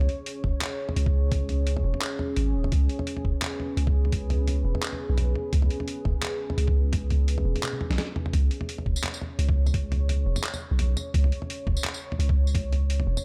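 Dark and spacious, this half-time drum and bass excerpt moves at 171 BPM with a 16th-note swing, built on a long, sine-based 808-style bass that sits up front with tube saturation and a deep, decaying tone beneath a moody, detuned ambient pad treated with chorus, reverb and sidechain pumping. A gritty, pitched-down boom bap sampler kit of snare, handclaps, hi-hat, tambourine and toms runs throughout with a compressed, tape-warm character, joined from 0.4 s by a thumpy electronic kick sitting in the background, and a drum fill arrives at 7.6 s. The sound carries a digital ambience with a faint mains hum.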